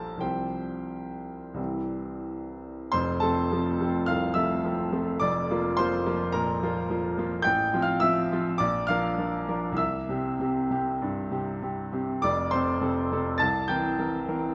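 A grand piano sits up front in a moderate concert hall, its reverb trailing off over about 2.0 seconds and giving the sound a sense of space. This passionate, lyrical romantic character piece for solo piano is cut from a longer work. The instrument has a bright, brilliant and open tone, with long sustain letting each chord ring. The playing moves with a flexible rubato in common time, ranging from the deep bass to the high treble. After a brief suspended opening, a new passage begins at 2.9 seconds and unfolds through major harmonies before closing on a dominant seventh chord at 13.4 seconds, leaving the phrase unresolved.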